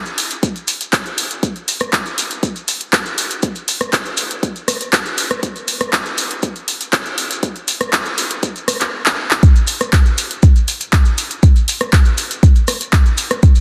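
A straight 4/4 house groove at 120 BPM opens at 0.1 s with a deep house drum kit of handclaps, hi-hat and rim click alongside grainy, band-limited maracas sitting in the background, before a deep, layered electronic kick drum arrives up front at 0.4 s. The dreamy, emotional build-up ends in a drum fill at 9.1 s and drops at 9.4 s. A lush hall reverb surrounds the produced, small-room drums in a dense, heavily limited modern master, and this cut is taken from a longer piece.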